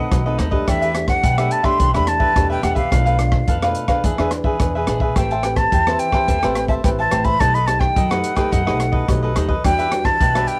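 Samba and choro come together in this festive, joyful excerpt, moving at 107 BPM in a straight 4/4 and cut from a longer piece. A breathy jazz flute carries the melody up front, its soft attack, vibrato and lifted highs giving it a slightly unsteady, airy voice. Beneath it, a crisp, picked cavaquinho and a thumb-plucked classical nylon-string guitar supply the accompaniment, while a woody, thumpy pizzicato upright bass anchors the low end and stops at 10.4 seconds. An open jazz drum kit, set in a small room with a boomy kick, adds kick drum, hi-hat and rim click from 0.1 seconds. The flute, cavaquinho and guitar carry cassette tape colour and plate reverb, the drums share the tape character, and the whole home recording on cassette sits in light reverb, with the harmony moving through rich changes from B7b9 to Em9.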